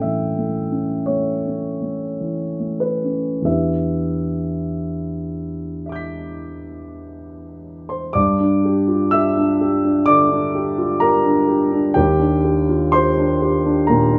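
A warm grand piano carries this brief impressionist classical excerpt alone, sounding natural and up front with long sustain that lets its chords hang in a light reverb. The mood is wistful and hazy, moving slowly at 46-65 BPM in 4/4 with a rubato feel that lets the time breathe freely. It opens in E minor, drifting from an A7 chord to Em7 before shifting into G minor at 8.2 seconds. There the harmony turns to Gm6 and then settles on Ebmaj7 at 12.0 seconds, casting a dreamy, clouded color. The piano spans a broad compass from Eb2 up to B6 across the 14.2-second fragment, which is cut from a longer piece.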